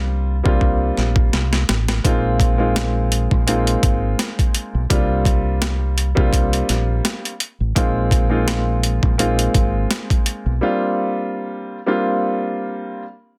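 Boom-bap hip-hop with a gritty, reflective mood, built on a dark, mellow concert grand piano moving between C9sus4 and Bb9sus4 chords over a round, punchy fingered electric bass, while an overdriven, thumpy sampler-style drum kit of kick, snare and hi-hat enters at 0.5 seconds with a short fill before the groove, and the piano carries on alone from 10.6 seconds, all under light reverb and a dense, heavily limited master.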